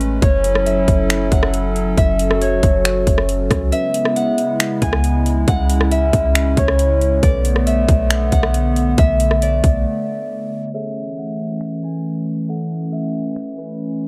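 Floating and dreamy, this atmospheric cloud-rap excerpt moves at 137 BPM in a half-time 4/4 feel in A major, cut from a longer piece, with chords drifting from F#m7 through C#m7 and Bm7 to Amaj7. A fingerpicked Celtic harp carries the ringing melody through tape echo over a hollow, flute-like pad with chorus and sidechain pumping, while a clean, boomy 808-style bass and an up-front trap kit of hard-clipped kick, metallic hi-hats, finger snaps and rim clicks drive the groove, the kick dropping out briefly around 3.7 seconds. A delicate, bell-like celesta enters quietly in the background at 3.7 seconds, the bass stops at 9.8 seconds, and from 10.7 seconds a break and filter sweep mark the closing section, all under light reverb and a low-pass filter.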